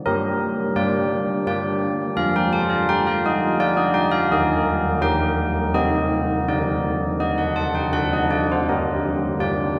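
This classical tune for church bells, cut from a longer piece, carries a solemn, wintry mood in triple metre with a straight feel. A set of old church bells plays alone from 0.1 s to 9.8 s, ranging from D3 up to A5. Their bronze tone is clangorous and full, with an audible minor-third overtone, the strike of an iron clapper, and a beating shimmer as each note rings. The bells themselves sound close-miked, dry and up front, yet the recording sets them in a church with a long, wet reverb that places the listener further back in the room. The harmony moves gravely through a handful of minor-key chords before settling back on its home chord at 8.7 s.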